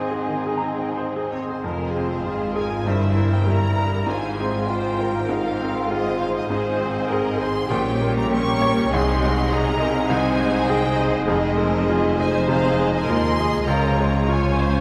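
Romantic classical music for piano and orchestra, this lyrical, lush passage is cut from a longer piece and moves with a flexible, rubato feel in four. A bright, brilliant baby grand piano sits up front carrying the melody across a broad range, its notes ringing with long sustain, while a distant, airy flute adds a very quiet second line only in the opening second. In the background, a violin section and a viola section play smooth, even bowed parts with vibrato from the start, and from 1.3 s a clear upper violin section joins with a second singing melody. At 1.6 s a rich cello section and double bass section enter together on the bass line, and just after, a mellow French horn section adds distant, roomy sustained chords. The whole ensemble sits in a vast, echoing cathedral-like space with a long, wet reverb tail, and lossy compression artefacts can be heard in the sound.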